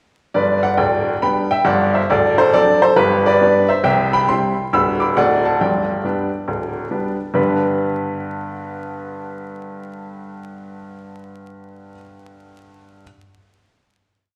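A bright, woody upright piano plays solo and up front in this short, exuberant, swinging stride-jazz piece at 137 BPM in G major, carrying its tune in thirds over a stride bass with its action noise audible amid a wet recital-hall reverb and vinyl crackle, before resting on a final chord from 7.3 to 10.8 seconds.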